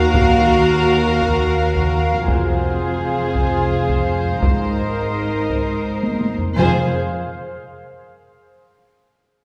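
In a slow 3/4 at 84 BPM, this uneasy, mysterious suspense-film cue in F phrygian sets sul tasto string sections (floating, soft-attack violins carrying the melody over a second violin line, warm, soft-attack violas and cellos, and a dark, woody double bass section) against a warbling, lo-fi tape-like pad with chorus and a taiko ensemble struck with hard sticks that breaks into a drum fill at 6.0 seconds. Everything is heard from further back in a wet scoring-stage reverb as the chords move from Ebmadd9 through Fm and Abadd9 in this excerpt cut from a longer piece.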